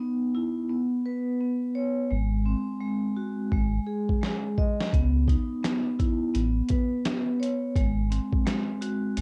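Boom-bap hip-hop with a moody, dark cast and a swung sixteenth-note feel, this cut from a longer piece opens on a mellow, ringing vibraphone with soft mallets and a slow motor vibrato, its cassette-tape tone carrying over chords like Badd11 and C#m9. A deep, sine-like sub bass with an octave enters at 2.1 seconds, and at 3.5 seconds a compressed, gritty sampler-style drum kit arrives with a drum fill, bringing a thumpy kick, a medium-tuned snare and hi-hat marked by vintage 12-bit grit. The home cassette recording is dry, with every part placed up front.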